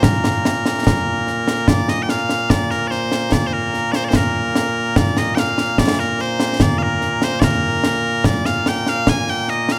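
Scottish traditional pipe music in a straight 2/4 at 73 BPM, this short excerpt in Bb major carries a stirring, ceremonial mood. Loud bagpipes carry the melody throughout, their tone bright, piercing and continuous, sitting solo and up front across a range from Bb2 to Ab5. Alongside them, concert snare drum and concert bass drum play for the full 9.8 seconds, sounding acoustic, close and dry, with dark cymbals colouring the kit. The pipes and drums share the foreground at a similar level, while a light reverb adds a touch of space to the whole. A brief opening passage gives way at 1.7 seconds to a longer second section that runs to the end of the cut, which is taken from a longer piece.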